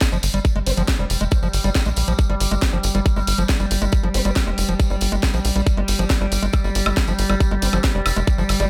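Psychedelic trance with a driving, alien mood, heard in a short cut from a longer piece, all resting on a single Fsus2 chord. An up-front, tight electronic kick anchors the groove alongside a layered garage kit of hi-hat, cracking snare and woodblock, while a jingly acoustic tambourine sits distant in a large room behind them. Low down, a punchy sequencer bass drives with sawtooth and square-wave plucks shaped by a moving notch, and above it an overdriven acid bass riff squelches with gritty, resonant filter sweeps, pumping against the kick and trailing tape echo. An overtone-sweeping drone holds sustained chords from 0.3 seconds, its evolving, chorused tone swelling in slowly and pumping under the beat. In the background, a detuned formant-sweep wobble bass enters at 0.7 seconds and drifts through lush chorus and dub echo, dropping out at 4.3 seconds before returning at 7.6 seconds, and a digital ambience frames the mix.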